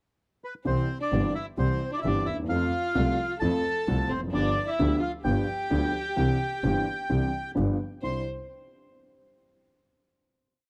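Elegant and passionate, this short tango in C major moves at 130 BPM in 4/4 with a rubato feel. During a brief pickup, the reedy, dark bandoneon enters up front at 0.4 s, carrying a smooth, motif-based melody in period phrases. A warm upright piano plays marcato in four, and a woody bowed violin adds a vibrato second line in octave doubling. A biting, earthy bowed double bass also plays marcato in four with light vibrato. The progression runs through C, F and G7 before settling on a final Cadd9 chord at 8.0 s, all captured in a dry, close 1970s-style studio sound.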